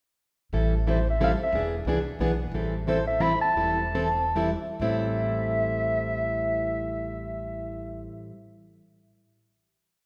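A wet scoring-stage reverb with a 2.2-second tail surrounds this short, complete piece of acoustic string swing in the jazz manouche style, set in A minor and a swung 3/4 at 127-181 BPM. The mood is virtuosic and bittersweet, moving through Am7 and E7 before slowing from 2.5 seconds and settling onto a final chord at 4.8 seconds. Up front, a picked, parlour-sized plugged-in steel-string acoustic guitar strikes rhythm chords on every beat, short and accented on two and three. Beneath it, a woody, thumpy upright bass on gut strings plays dark pizzicato roots and fifths with walk-ups. From 0.9 seconds a mellow clarinet carries the solo melody in a jazz style, shaping song-like motifs with light vibrato and a smooth top.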